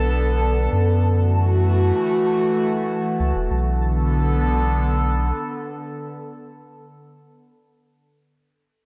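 Bathed in a moderate echo-chamber reverb, this eerie, intricate IDM excerpt sets a warbling, nostalgic, lo-fi tape-like pad with chorus and phaser holding sustained chords over a deep, round sine sub bass that carries a filter sweep until 3.5 seconds, while a dark, pulsing gated texture sits in the background and drops out at that same point.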